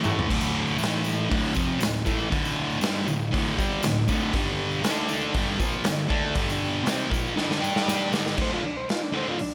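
A thick, double-tracked fuzz guitar opens at 0.0 seconds with a bright, picked riff, joined at once by a jingly tambourine set back in a large room and a drum fill from the kit. This is a swaggering, raw garage rock excerpt in a straight 4/4, and the guitar sits up front, grinding through D5, A5 and G5 power chords. The acoustic drum kit is just as forward, saturated and gritty, with a punchy kick, a medium-tuned snare, hi-hat, crash and toms ringing in a pumping stone room, its top end rolled off. A second drum fill leads into a new section at 8.4 seconds, where a vintage combo organ enters with a short, reedy, overdriven melody carrying a light vibrato. Light reverb gives the mix a touch of space before the cut.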